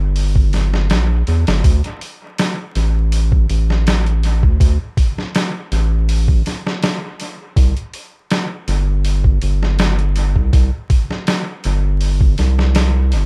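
A round, deep analog bass with a mellow, sustained tone sits up front from the first moment, joined at 0.2 seconds by a gritty, pitched-down sampler-style drum kit of thumpy kick, medium-tuned snare and hi-hat, its dub echo feeding an echo-heavy, crackling vinyl mix in this hypnotic, brooding trip hop excerpt with a gentle swing.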